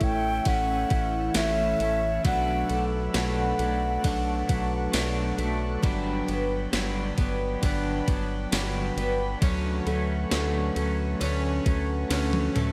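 Floating and ethereal, this dream pop piece sets a close-miked, airy alto ocarina melody with digital delay, heard until 5.4 s, over a shimmering, octave-doubled twelve-string acoustic guitar playing chorus-soaked arpeggios, a twangy, slightly broken-up electric guitar with tremolo, soft flute-like tonewheel organ chords turning through a slow rotary speaker, a deep, round analog bass, and an up-front gated 80s drum machine with thumpy kick, gated reverb snare, ride, tambourine and toms that closes on a fill at 12.1 s, inside a light reverb.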